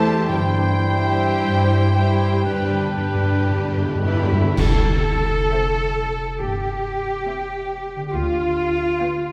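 A rich, up-front cello section anchors this tender, serene slow romantic orchestral excerpt in C major at 51-71 BPM with a rubato feel, as a smooth violin section sings the melody over lush second violins, close violas and a focused double bass section, while a present oboe, mellow soft-attack clarinet, hollow distant flute and very quiet mellow French horns colour the opening seconds, a ringing harp plays arpeggios throughout, hard-mallet timpani enter at 0.3 s with a fill from 2.4 s, and dark clash cymbals with concert bass drum mark an accent at 4.6 s, heard from further back in a reverberant concert hall.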